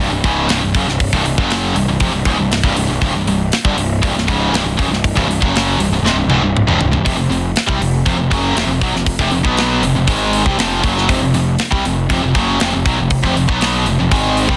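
Over a straight four-beat pulse, this heavy, relentless metal excerpt pairs two bright, high-gain distorted guitars playing picked riffs with a growly, fuzz-laden overdriven bass and a tight, up-front acoustic kit of hi-hat, kick, medium-tuned snare and toms, which enters at 0.2 seconds and plays a fill from 6.0 seconds before the harmony moves from C5 to F5 at 7.1 seconds, all within a small room sound and a dense, heavily limited modern master.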